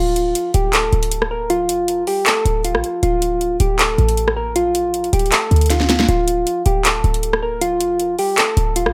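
Hard-hitting yet eerie, this short trap cut from a longer hip hop piece moves with a half-time feel over a single D minor chord. Soft, round electric-piano-like synth keys carry the melody in a narrow band, their mellow triangle-and-sine tone thickened by a sub octave, a filter sweep, chorus and tape echo. Underneath, a short 808-style bass hits punchy and tight, its sine body carrying a noise layer and a fast attack before decaying. The electronic trap kit arrives at 0.2 seconds with a sharp snare, metallic hi-hats, handclaps and rim clicks, and a brief drum fill breaks through from 5.7 to 6.1 seconds. Keys, bass and drums all sit up front in a produced mix under light reverb.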